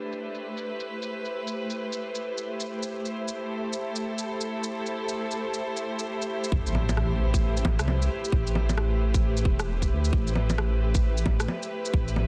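Rich, smooth symphonic strings hold a sidechain-pumped Am7 chord over low-pass filtered electronic shaker, bongos and rim click in this rainy, nocturnal future garage excerpt with a swung sixteenth-note feel, until at 6.5 seconds a very quiet electronic impact ushers in a tight, reverb-touched kick and a deep, rumbling, detuned saw bass with tube saturation and its own pumping, all in a dense, heavily limited modern master.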